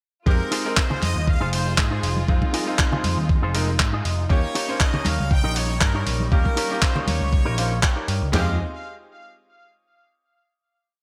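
Nu-disco with a sleek, groovy feel, where a gritty, thumpy sampler-style kit drives a four-on-the-floor kick with claps and gated-reverb open hats, an overdriven, punchy picked bass plays a syncopated riff, a bright grand piano with audible action noise and pumping delay pushes rootless chords, an envelope-filtered guitar with analog chorus chops a funk rhythm, background congas and a very quiet bowed string pad fill in, and a brilliant trumpet section with digital delay calls out short motifs from Fm7 to Eb7 before a clean guitar fill at 7.3 seconds leads into the final chord at 8.3 seconds.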